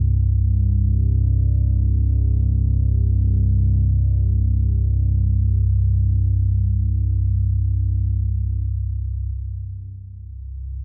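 This ambient fragment, cut from a longer piece, unfolds in free time and carries an ominous, vast mood. A single deep rumbling drone plays alone for the full 10.8 seconds, sitting low between C2 and G2 and resting on a C5 chord, with tuning set slightly under standard at A4 = 439 Hz. Its dark, warbling tone blends triangle and sawtooth waves into a vintage character, shaped by a slow attack, long sustain and long release. Reverb built into the drone gives it a sense of depth, while the surrounding room stays dry, and the drone sits up front in the mix. The music moves into a new section at 9.3 seconds, where it continues through to the close of the fragment.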